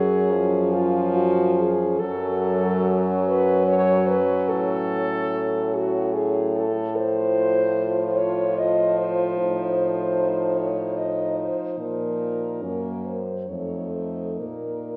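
A resonant recital-hall reverb fills this solemn, melancholic fragment cut from a longer classical piece for horn quartet in F# minor, moving in a rubato 3/4 at around 65-76 BPM. A mellow, up-front French horn carries the melody over a clear horn singing a second line, while a warm horn supplies the accompaniment and a vintage-toned horn with light vibrato holds the bass, all four sounding from start to finish. The harmony drifts from F# minor through F/A, Gb and F7 before the chords fall away at 14.4 seconds.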